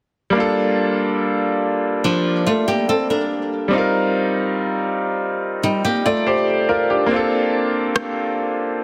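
The recording sounds dense and heavily limited, with a modern sheen and light studio reverb around the instruments. This short contemporary R&B excerpt in G minor moves at a slow 71 BPM in a straight 4/4 and carries a late-night, sensual mood. A bright concert grand piano sits up front from 0.3 seconds, playing accompaniment with a brilliant top, deep bass and long sustain over chords that move from Gm7 to F9sus4 and then Bbmaj7. At 2.0 seconds a fingerpicked flamenco guitar enters with acoustic arpeggios, its tone warm and up front and colored by tape echo. Near the close, at 8.0 seconds, a brief electronic rim click adds a produced drum accent beneath the piano.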